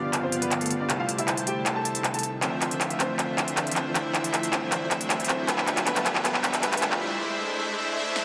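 A lush, wet hall reverb and a dense, heavily limited modern master frame this dreamy, bittersweet future bass build-up, cut from a longer piece and moving at 157 BPM in a half-time feel. Up front, a soft, smooth supersaw carries the riff from the start to 8.2 seconds, its detuned sawtooth unison and sub octave shaded by a low-pass filter sweep that runs through the whole passage. A punchy, overdriven big-room dance kit of handclaps, crisp hi-hats and snare enters at 0.1 seconds and plays a drum fill, while a very quiet riser comes in beneath it at 0.4 seconds. In the background, a baby grand piano with short sustain plays the melody through a low-pass filter and delay, alongside a mellow, clean tine electric piano heard through its built-in speakers with tape echo, and a very quiet, airy, breathy pad with chorus and a slow attack holds sustained chords. The harmony circles through G7, C6, Dm9 and Am7 before returning to G7 at 5.5 seconds and C6 at 7.0 seconds, just as the electric piano and pad stop.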